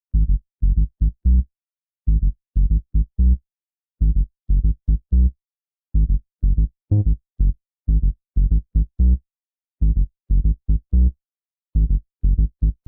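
Clinical and cool, this short cut from a longer techno piece moves at 124 BPM in 4/4 in G# minor, with a 60% swing on the sixteenths. A lone saturated sub bass carries it from 0.1 to 12.7 seconds, deep and thick with a triangle-like tone, tube saturation, a fast attack and sustained notes sitting up front. The dry, low-pass-filtered sound is shaped by a filter sweep that runs through the whole passage.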